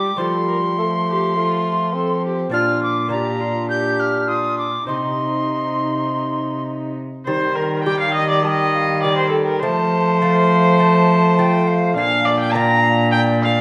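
Solemn and courtly, this renaissance-style consort dance moves at 102 BPM in a straight 4/4, an excerpt cut from a longer piece that passes through F, Bb, C minor and Eb across two statements of the same section, the second starting at 7.3 seconds. An airy, wooden alto recorder carries the melody with tongued chiff and vibrato, while a rich, reedy gut-string viola, bowed by one player, sings a second line up front. A nasal period-style cello holds the bass, a mellow, smooth-topped bassoon adds accompaniment, and a delicate, bright fingerpicked lute with double gut strings sits in the background, all within the generous reverb of a recital hall.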